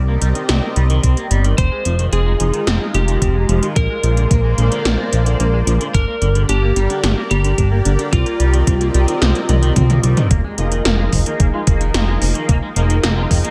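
A lightly driven lead guitar carries the melody from 1.6 seconds, its picked, compressed tone touched by tape echo, in this nocturnal, cinematic synthwave passage cut from a longer piece, moving at 110 BPM in a straight 4/4 and tuned to A4 = 435 Hz. Underneath, a glossy chorused synth bass sits up front, while a lush, detuned unison pad holds sustained chords through chorus, phaser and sidechain pumping, and a twangy, fingered electric guitar at the edge of break-up plays arpeggios through phaser, low-pass filter and tape echo. The 80s electronic pad drums bring metallic hats and a gated snare and toms, joined by a thumpy, sampler-style electronic kick drum, and a drum fill leads into a new section at 10.3 seconds. There the chords shift from a Cm7, Fm7, Bb7, Gm progression that returns to Cm7 to Bb7sus4/F, a crunchy, double-tracked overdriven guitar riff appears in the background, filter sweeps move across both guitars, and fat, warbling analog synth brass stabs with vibrato arrive at 10.6 seconds. 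Light reverb and digital ambience frame the whole mix.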